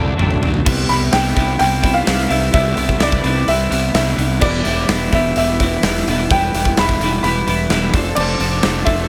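A lightly reverberant, carefree indie rock excerpt opens with a drum fill on a big acoustic kit, its bright cymbals, punchy kick and medium-tuned snare sitting up front in a stone room. A jangly, clean, compressed twelve-string electric guitar plays a double-tracked riff over a warm, fuzz-overdriven fingered bass as the chords move from D through Cmaj7 and Em to F6. At 0.9 s a brilliant, woody, slightly detuned upright piano with a worn character takes the melody high up, wrapped in slapback echo and plate reverb.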